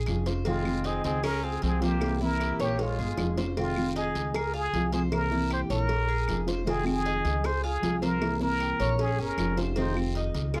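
A metallic, picked Cuban tres playing arpeggios and a thumpy, woody upright bass up front open this nostalgic Cuban son and guajira excerpt, joined at once by a dark, full-bodied nylon-string guitar, tight high-tuned cowbell and bongos, close dry claves and a raspy guiro. From 0.5 s a plunger-muted trumpet carries the melody in a jazz style, with wah-wah, light vibrato and scooped notes, while a clear, close-miked second trumpet sits in the background until 3.4 s and returns at 9.0 s; a drum fill leads into the repeat of the section at 3.6 s. The whole cut has the dry, intimate sound of a 1970s studio, with little reverb over a looping chord cycle in F minor.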